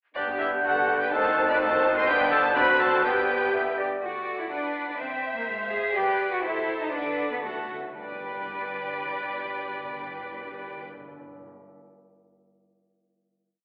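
Spirited and graceful, this quick classical-period movement for symphony orchestra in G major moves in a straight 2/4 at around 111-127 BPM. A rich, focused violin section carries the melody over a clear, intense second violin line doubling it in sixths, a smooth viola section rocking a two-note figure, a cello section on the beats, and a background double bass section doubling the bass line. Winds and horns fill the opening phrase: an airy, hollow flute, a soft-attack oboe doubling the tune at the octave, a very quiet clarinet answering at phrase ends, a punchy bassoon, and a mellow, distant French horn section. The tempo slows from 5.5 s as hard-mallet timpani enter with a fill at 6.9 s, leading to a final G chord at 8.0 s, all set in a wet recital-hall reverb with a thin, telephone-like sound.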